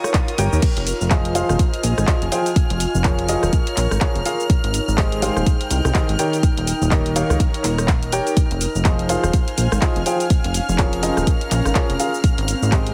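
Heavily compressed, radio-style and nearly dry, this energetic, soulful piano house excerpt in F minor moves at 124 BPM with a swung 16th-note feel: a very quiet electronic swell fills the first 0.6 seconds, then at 0.4 seconds a clear, short-sustained baby grand piano riff with delay enters beside a punchy, funky analog bass. A punchy, up-front electronic kick and a house drum kit of bright hi-hats, handclaps, rim click, shaker and crash drive it, while an airy, breathy chorused pad and lush, woody strings in the background sustain chords through Eb7, Fm7, Db6 and Abmaj7, with the piano, bass, pad and strings all pumping to the sidechain.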